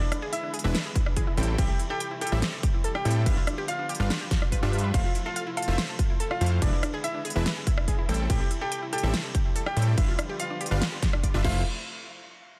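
A bright, brilliant concert grand carries the melody from the first moment of this lush, euphoric future bass drop at 143 BPM in a half-time feel, joined at once by muted, veiled con sordino chamber strings holding sustained chords in the background, a detuned, ring-modulated unison pluck spinning arpeggios, and a punchy, airy supersaw stab riff, with the piano, pluck and stab all pumping to the sidechain and trailing dub echo. The fat, saturated analog bass enters at 0.6 seconds, up front and thick, and an electronic kick with a tape-warm punch lands at 1.0 seconds beneath a big-room kit of huge snare, crisp hats, rim clicks and crashes in a small room. The harmony cycles through E7, Am7, G7 and Fmaj7 under a dense, heavily limited modern master, in a short cut from a longer piece.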